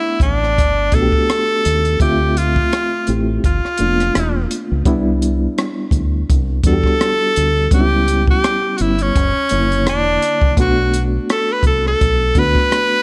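An edgy tenor saxophone takes the melody up front from the very start, its light vibrato and pop-style solo voice setting a sensual neo-soul mood, while a reedy electric piano plays the accompaniment with a fast tremolo. The piano sounds worn and slightly out of tune, yet clean and warm, coming through its built-in speakers. At 0.2 seconds a deep dub fingered electric bass enters, dark and round, alongside a compact cocktail drum kit playing hi-hat, punchy kick and rim click with a smooth, rolled-off top. The R&B groove has a gentle swing on the sixteenths, and a small room ambience keeps the sound intimate. Jazz-tinged harmony moves from Gmaj9 through Dm9, Cmaj9 and F#7b13 to Bm7 in this short excerpt cut from a longer piece.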